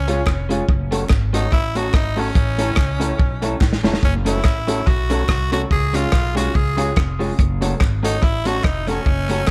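A dry mix opens this mischievous, energetic ska excerpt, with a crunchy breakbeat drum kit sitting up front: a saturated, gritty snare, tight kick, hi-hat and rim clicks, all with a rolled-off top. A raspy tenor saxophone leads in a forceful, close-miked pop style, its edgy tone and vibrato trailed by dub echo. Underneath, a woody, thumpy pizzicato upright bass holds the low end, while an electric guitar through a small old amp adds slightly broken-up, compressed picked accompaniment. A dark upright piano punctuates with mellow, vintage stabs, its action noise audible, and a group handclap sounds crisp but distant in a large room in the background. The lightly swung groove moves through C#, F#m and A chords, with a drum fill at 3.6 seconds.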